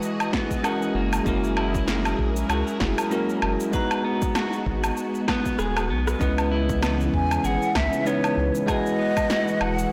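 A blown-out, overdriven mix bathed in lush hall reverb carries this relaxed, smooth sunset chillout excerpt, where a bell-like tine electric piano with tape echo and a silky string machine with ensemble chorus hold chords over a lazy sixteenth-note swing, a dark, picked clean electric guitar traces arpeggios, a round, up-front analog bass anchors the low end, overdriven electronic shaker, woodblock, punchy snare, rim click and deep kick keep the groove and break into a fill at 5.6 seconds, and a breathy, hollow concert flute with vibrato and delay enters with the melody at 7.1 seconds.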